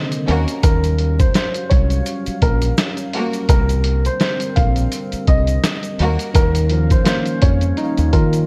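A compressed, pitched-down sampler-style drum kit with a thumpy kick and medium-tuned snare drives this dark, tough boom-bap hip-hop excerpt, its swung groove sitting up front beside a round, punchy dub bass played on fingered electric. A woody, slightly detuned upright piano carries the melody over a worn tine electric piano with cassette tape coloring, while a moody sawtooth analog pad with chorus hums in the background and a grainy tube shaker adds faint texture. Lush bowed symphonic strings with vibrato and analog delay play stabs from 0.3 to 6.3 seconds, and the whole mix wears light reverb and a warbling old-tape pitch drift.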